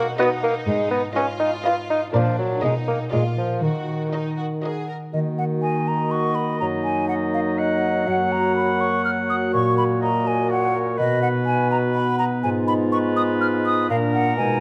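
A sneaky, mischievous film cue in Eb minor at 123 BPM in a whimsical 3/4 opens with a warm violin section carrying the melody over a rich second violin line, dark violas, a mellow bassoon and ringing, fingerpicked harp arpeggios, with lush cellos supplying the bass from 0.7 s; the strings fall away by 5.0 s, and a pure, hollow silver flute, a background clarinet and a distant, roomy oboe spin second lines alongside smooth-topped French horn chords, all captured with close, detailed microphones in moderate concert-hall reverb.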